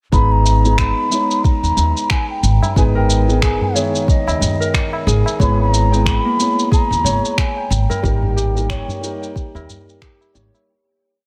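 A swung 16th-note feel at 91 BPM in 4/4, built from a soft electronic kick, shaker and finger snaps and close, dry high-tuned tabla, carries this mystical, meditative organic downtempo piece in G# harmonic minor, where a woody pizzicato upright bass sits up front beneath held quartal chords from a felt-muted upright piano with audible action noise and sidechain pumping, a pure, vibrato-laden bamboo bansuri wanders through a free melody with delay, a fingerpicked Celtic harp enters at 3.0 s with a ringing ten-step loop drifting against the bar, and a very quiet bronze singing bowl holds a high note with slow beating, set in light reverb before a fade-out from 7.2 s.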